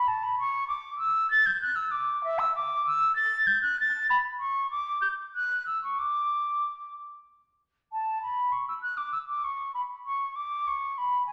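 Bathed in the wet reverb of a recital hall, a mellow concert flute with an airy, straight tone and soft attack plays alone through a serene, flowing baroque-style fantasia in D major, moving at 64 BPM in a rubato 6/8 with uneven beats, in a short passage cut from a longer piece.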